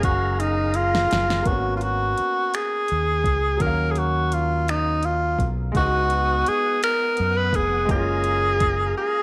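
Light reverb gives this sultry, late-night slow R&B excerpt a soft glow as it moves at 56 BPM in a straight six-eight through G# dorian chords such as F#maj9, G#m11 and C#9sus4. Up front, a breathy tenor saxophone carries the jazz-style melody with vibrato, scooped notes and a slapback echo. Around it sit a clear, vintage-toned concert grand piano, a dark, round fingered electric bass and a produced drum kit of finger snaps, metallic hi-hat, soft kick and fat snare that plays an early fill from 0.4 to 1.5 seconds, while in the background a lightly overdriven tonewheel organ with key click, chorus vibrato and a slow rotary speaker holds chords, dropping out at 1.4 seconds and returning at 5.8 seconds.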